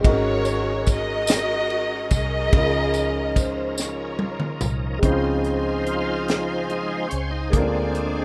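Soulful and reverent, this slow gospel excerpt in 6/8 at 48 BPM in Db major sets a woody upright piano, a shouting tonewheel organ with fast rotary speaker, overdrive and chorus vibrato, a dark foam-muted electric bass, an up-front funk drum kit with a high-tuned snare, and a jingly tambourine under a lush string section carrying an expressive melody with vibrato and portamento; after a drum fill from 3.8 seconds, the organ takes a solo at 5.0 seconds while brighter, intense strings hold chords in the background of a rough home-demo mix with light reverb.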